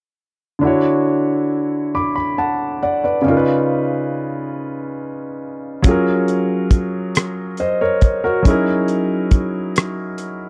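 A warm, intimate mood settles over this slow R&B fragment in six-eight metre, cut from a longer piece. A clear grand piano carries the accompaniment from 0.6 seconds, its natural tone sitting up front with long sustain and the audible noise of its action, moving through Dmaj7, C#7, F#maj7 and F#13 across a range from C#3 to D6. At 5.8 seconds a cloth-damped, thuddy drum kit joins with hi-hat, kick drum and rim click, its tight kick and rolled-off top giving it a muffled, acoustic character in a small room. The drums sit up front and slightly louder than the piano. The whole passage has the dry, close feel of a 1970s-style studio recording, lending it a hushed, personal closeness.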